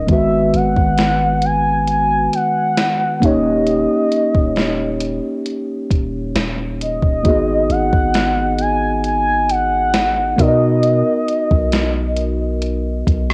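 A cassette home recording with light reverb frames this moody, late-night contemporary R&B fragment, where a smooth, detuned portamento lead glides over a mellow tine electric piano in lush chorus, a deep sine 808-style bass with long decaying notes, and a thumpy 80s digital drum machine whose snare carries gated reverb, as the harmony moves through G#m7, D#7 and Bmaj7.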